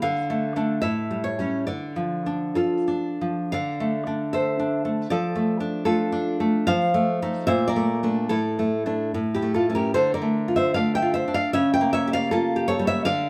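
Set in 2/4 with a flexible, rubato pulse drifting between 59 and 81 BPM, this short excerpt from a longer romantic work for solo classical guitar unfolds in D minor with a melancholic, wistful mood. A single nylon-string guitar carries everything from the first note to the last at 13.3 seconds, fingerpicked across a span from A2 up to G5. Its tone is bright and full-bodied, sitting up front, with finger squeak audible in the playing. The harmony moves from Dm and A7 through Dm/F, F7 and Bbmaj7, pausing on Asus4 before resolving to A and back to Dm, then darkening onto C#dim7 at 11.5 seconds. A moderate reverb from a large room lends the performance a spacious, natural bloom.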